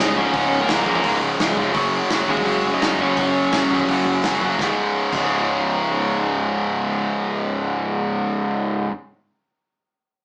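This punk rock fragment, cut from a longer piece, drives at 169 BPM in a straight 4/4 with an energetic, upbeat mood. A double-tracked distorted electric guitar sits up front with a picked, bright riff in its low register, running the full length, while a growly fuzz bass with a punchy, amped edge holds the bottom end beneath it. Over the top, a second overdriven guitar carries a picked melody until 4.2 seconds. An acoustic rock kit with bright cymbals, a medium-tuned snare and a punchy kick joins at 0.2 seconds and drops out at 5.2 seconds, leaving the riff and bass to carry on. The harmony moves from Db5 to Gb5 and returns to Db5 as a new section begins at 4.6 seconds, all captured with the feel of a band playing live in one room, a moderate studio reverb and a small-speaker sound.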